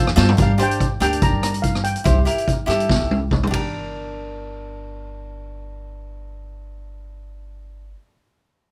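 Dramatic and driving, this calypso fragment in a straight 4/4 runs from Gm to C7 and back to Gm. A shimmering, metallic lead steel pan, struck with medium rubber sticks and set in a boxy small room, carries the high melody from 0.4 seconds. Underneath, a crisp, picked acoustic cavaquinho sits up front in the accompaniment, while a woody, growly pizzicato upright bass on steel strings holds down the low end throughout. The acoustic street-band drum kit is the loudest part, mid-forward and up front with a high-tuned snare, boomy kick and rolled-off top, working hi-hat, ride cymbal, rim clicks and toms, with drum fills near the start and again before it stops at 3.6 seconds. Once the pan and drums fall away, cavaquinho and bass carry on alone into a second passage, all captured with close, detailed microphones and light reverb.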